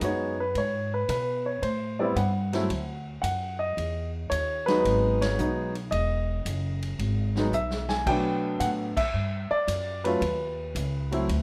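A moderately reverberant studio sound frames this playful, swinging jazz piano trio, cut from a longer piece, with an intimate grand piano carrying the melody up front, its action noise audible under a plate reverb, a woody pizzicato upright bass also up front, and a distant, roomy drum kit with a boomy kick, the whole trio hitting band accents at 5.1 and 8.9 seconds around a drum fill beginning at 7.5 seconds.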